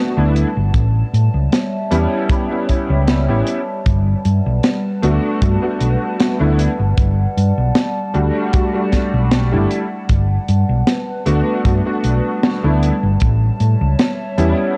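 Vaporwave at 77 BPM in a straight 4/4, dreamy and faded, cut from a longer piece: a vintage electric grand piano with chorused unisons, tape echo and 12-bit sampler grit comps over a warbling, detuned pad treated with chorus, phaser and reverb, while a round, dark hollow-body bass enters at 0.2 seconds, followed at 0.4 seconds by a dry, polished funk kit with a high-tuned snare and a tight kick, all cycling between Em11 and A7 within a small room and the grain of cassette tape.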